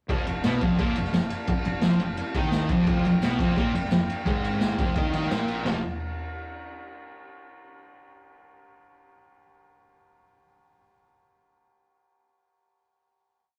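Garage rock with a rowdy, swaggering feel, built on a double-tracked fuzz guitar octave riff up front, doubled by a growly, very quiet fuzz bass driving eighth notes beneath boomy, gritty drums with a rolled-off top, while a reedy overdriven combo organ holds background triads with spring reverb, adds a fill at 2.2 seconds, and a jingly tambourine joins at 0.4 seconds, all captured in a rough rehearsal-room cassette sound before the piece lands on a final chord at 5.6 seconds.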